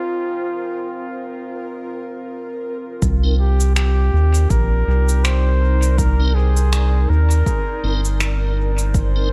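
A bucket-muted trumpet carries the melody from the start, its veiled, smooth-topped tone touched with light vibrato and trailed by dub echo, in this deep, hazy ambient dub excerpt at 81 BPM in C minor with a swung sixteenth feel. Beneath it a warbling, nostalgic pad holds sustained chords over Fmadd9/C, its detuned, lo-fi character softened by chorus and reverb while a filter sweep moves across it, and a bubbling, resonant texture of random filter steps hovers on Bb4 between 0.5 and 3.0 seconds. At 3.0 seconds the harmony settles on Cm7 and the groove arrives: a round, dark analog bass sits up front with a plucked, fast attack, joined by a deep, tape-warm electronic kick and electronic cabasa and finger snaps, the latter thrown into dub echo. Just after, at 3.2 seconds, a piping tonewheel organ adds clean, scooped stabs with key click, chorus vibrato, fast rotary speaker and dub echo. The overall sound is dry, with the bass dominating the mix.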